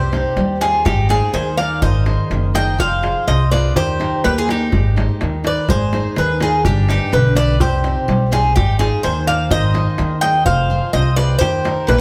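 A Greek bouzouki leads this brooding, cool Greek folk band cut at 125 BPM in a straight 2/4, its metallic double strings with some octave-doubled courses carrying the melody up front between G4 and G5. Beside it, a bowl-back mandolin plays a softer second line on its paired strings, while a picked steel-string acoustic guitar with an auditorium-sized body fills in the accompaniment beneath. An upright bass, plucked on steel strings with a woody, thumpy tone, anchors the low end as loud as the lead. A darbuka joins at 0.1 seconds, its large, deep metal shell struck with hard hands for a crisp sound that sits in the background of a small room. The harmony circles through Cm, Ab, Fm and Eb, touching G before returning to Cm at 7.6 seconds as the same section repeats, and the whole band is heard from further back in the room through a moderate plate reverb, taken from a longer piece.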